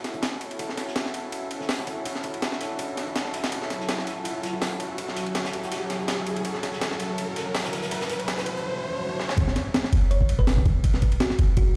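Gritty, up-front sampled breakbeats with a thumpy kick and high-tuned snare drive this raw, nostalgic drum and bass and jungle excerpt at 164 BPM, backed by a distant, roomy acoustic kit and a lush, detuned, chorused pad on F#m7 and A6/F# chords while an electronic riser builds, until a drum fill at 9.2 s drops into a deep, boomy 808-style bass at 9.4 s and a round, tine-like thumb-piano pluck with dub echo from 10.1 s, set in a stone room with vinyl crackle.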